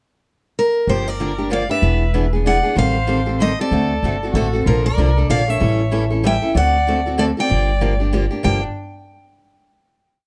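Acoustic string swing in the jazz manouche style, this short, complete piece is virtuosic and swinging, in G minor at 190 BPM in a lilting 3/4. A picked steel-string lead guitar opens the pickup at 0.6 s with bright, hook-like motif phrases, finger squeak audible, and at 0.9 s the rest of the group joins. A second picked steel-string guitar plays on every beat with short, accented chops on two and three. An up-front upright bass with woody gut strings plays thumpy root-and-fifth lines with walk-ups. Alongside them, a single bowed violin carries an expressive harmony line, mostly in thirds, with vibrato, soft attacks and portamento. The changes run from Gm7 through E7, Am7b5, D7, Bbmaj7, A7 and D7 back to Gm7, closing on a final chord at 8.5 s in a dark, warm mix with light reverb.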